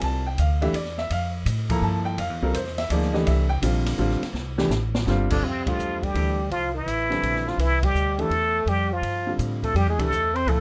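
A baby grand piano, upright bass and open jazz drum kit open this cut from a longer modal jazz piece, sounding an Fmaj9 chord in F major at 166 BPM in a swung 3/4 that feels hypnotic and searching. The piano accompanies with an open, short-sustained tone placed up front. The bass, plucked on steel strings, sounds woody and close. The drums sit in a natural studio room, with dark cymbals, a medium-tuned snare and a boomy kick. A drum fill at 4.3 seconds leads into the second section, where at 5.3 seconds a trumpet with plunger mute takes the melody, bright and wah-wah inflected with vibrato and a vintage jazz character, while a breathy tenor saxophone adds a mellow, punchy second line with scooped notes and a smooth top. Band accents punctuate this passage, and light reverb lends the group a gentle sense of space.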